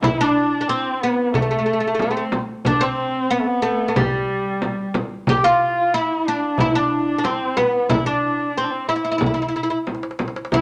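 A straight 4/4 pulse at 92 BPM drives this festive, warm Turkish makam ensemble piece in C makam rast, tuned to A4 = 439 Hz and cut from a longer piece. Up front, the woody, fretless oud carries the melody on plectrum-plucked double strings, while a dark, boxy kamancheh sings a bowed second line with expressive vibrato and portamento, both moving between G3 and G4. Beneath them, a close, dry clay-shell darbuka and a deep, compressed, saturated frame drum keep the beat in a moderate studio reverb, and a drum fill arrives from 9.9 to 10.5 seconds.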